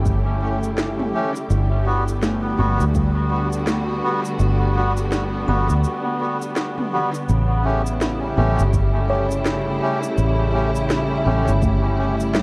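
Ambient dub with a peaceful, spacious mood and a swung, unhurried 4/4 feel, cut from a longer piece and moving from A7 to Gmaj7 and back, with vinyl crackle and light reverb. A lush, bowed string section holds sustained chords up front beside a round, foam-muted fingered bass, while a reedy, breathy melodica punches out stabs and a buzzing, hollow-bodied kalimba ripples arpeggios in the background, both trailing dub echo. A tape-warm electronic kit with a woody snare, shaker and toms carries dub echo throughout, joined by a deep electronic kick that drops out from 3.1 to 8.7 seconds, spanning a break at 5.8 seconds before the second section arrives at 7.3 seconds.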